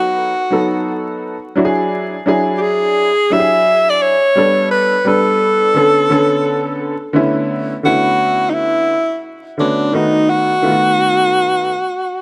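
A swung 4/4 groove at 86 BPM sets a smoky, cool hip hop mood in B minor, in this piece cut from a longer track. An up-front alto saxophone with jazz-style vibrato and a touch of analog delay carries the melody as a solo through the first 7.1 seconds, over a worn, woody, slightly detuned upright piano accompanying on chords like B7, E9, A9sus4 and Bm11. Light reverb, a small room ambience and vinyl crackle give the sound a dusty, intimate feel, with the piano stopping at 11.7 seconds just before the saxophone ends at 12.2.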